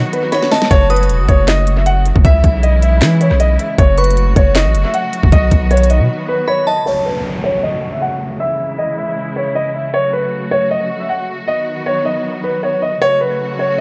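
A warm grand piano carries the brooding, melancholic melody through a low-pass filter and analog delay in this half-time trap excerpt at 156 BPM in F# dorian, set over veiled, muted bowed strings holding chords, a glassy, chorused FM synth bell second line, a deep sine 808-style bass and an electronic trap kit with a hard-clipped kick, sharp snare and crisp hats, with the kit stopping at 6.0 seconds and the bass at 6.1 seconds before an electronic downlifter enters at 6.9 seconds during a filter sweep in the echo-heavy mix.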